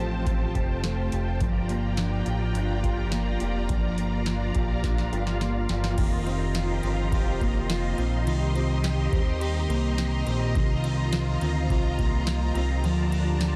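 A fat, detuned analog bass sits up front in this blissful, ethereal dream pop piece, its sawtooth and square tone carrying a filter sweep and moving notch across low notes from F1 to Eb2. It runs at 105 BPM in a straight 4/4 in F mixolydian, tuned to A4 = 441 Hz, over a booming analog drum machine re-recorded in a small room, with a deep kick, a crisp snare touched by soft clipping, metallic hats, ride, crash and tambourine, and a drum fill from 4.8 to 6.0 s that leads into the second section. A dark, clean electric guitar plays fingered, compressed arpeggios through ensemble chorus and tape echo, while a vintage string machine with cellos holds full, soft-attack chords with a sub octave and long release. From 5.3 s a reversed, granular texture drifts in the background, carrying its own reverb and tape echo. The harmony moves from Fadd9 and Gm7 to F7sus4, Cm7 and Bbmaj7/D, all under light reverb and a dense, heavily limited modern master.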